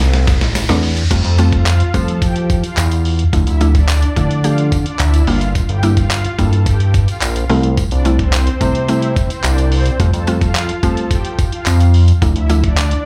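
Carefree and upbeat, this dance-pop excerpt opens with a brief build-up of drum fill, background riser and a filter sweep on the woody, mallet-like synth pluck, then drops at 1.1 seconds into a gritty, thumpy sampler-style kit with fat snare, handclaps and crash, a glossy, nasal chorused synth bass pumping up front, jingly tambourine in the background, and a lush supersaw pad carrying the melody from 1.2 seconds over chords moving from Fadd9 through Dmadd9 and Gm7 to C6, all heard through a live venue's PA with club reverb.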